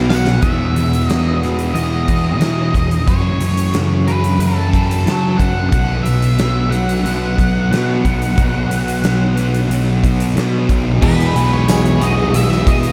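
Shoegaze and dream pop rock at 91 BPM in E major, dreamy and wistful, cut from a longer piece and soaked in a lush hall reverb. A drum fill opens the clip on a huge arena kit with a fat snare, punchy kick and bright cymbals in a pumping room, and the kit then carries on to the end. A thick, dark fuzz guitar sits up front with distortion and lush chorus, beside a semi-hollow electric guitar whose clean, fingered riff stays in the background behind reverse reverb, while a fuzzed, overdriven picked bass anchors the low end. Above them an octave-fuzz lead guitar plays a distorted melody through tape echo. A double-tracked cranked stack guitar, bright and overdriven, appears only in the first moment and returns at 11.0 seconds, and a very quiet, jingly tambourine resurfaces from a distance moments later. The chords drift from Emaj7 to F#m7 and Bsus2 before settling back on Emaj7 at 11.0 seconds.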